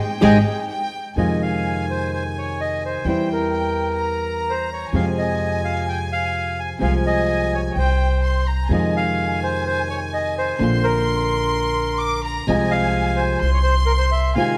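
Close, detailed microphones in a moderate concert-hall reverb frame this sultry, melancholic tango excerpt in F minor at 128 BPM with a rubato feel, where a band accent marks the first 1.2 seconds as a reedy, boxy bandoneon carries the melody up front, a clear chamber violin section with light vibrato and a biting, smooth top bows a high second line, a dark, fingerpicked flamenco guitar with audible finger squeak supplies accompaniment, and a woody pizzicato upright bass sits up front on the low end.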